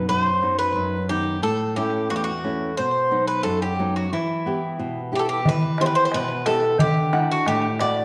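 A metallic, double-strung Greek bouzouki picks a cool, bittersweet melody up front with slapback echo over a bright, fingerpicked nylon-string guitar in this short Greek folk passage in 2/4, moving from B and A to E minor, with a distant clay darbuka played with hard hands joining at 5.5 seconds before the harmony settles on a Dadd9 chord, all set in a small room with a wet echo-chamber reverb.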